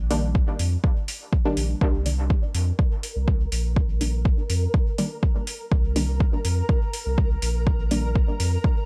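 A round sine sub bass with sidechain pumping opens this meditative dub techno excerpt in C minor at 123 BPM, joined at once by muted, detuned chord stabs on a rootless Cm7 carrying chorus, phaser, pumping and dub echo, plus metallic overdriven hi-hats and an up-front overdriven kick, before a filter sweep moves across the stabs from 1.8 seconds and a flickering granular texture with its own reverb and pumping drifts in at 2.8 seconds, all captured with a dry, gritty hardware character, cassette-tape grain and a digital ambience.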